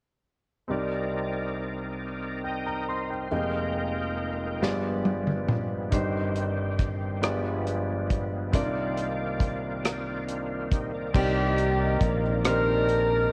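In a slow, straight 6/8, this fervent, solemn gospel passage cut from a longer piece opens at 0.7 seconds with an intimate grand piano, its action noise audible, over thick, gritty tonewheel organ chords turning through a slow rotary speaker with chorus vibrato, and a dark, tight-kicked studio drum kit enters with a fill at 4.6 seconds; at 11.1 seconds a round, punchy fingered electric bass and a barely audible French horn section arrive, joined by a mellow, roomy horn section carrying the melody, all inside a moderate echo chamber reverb.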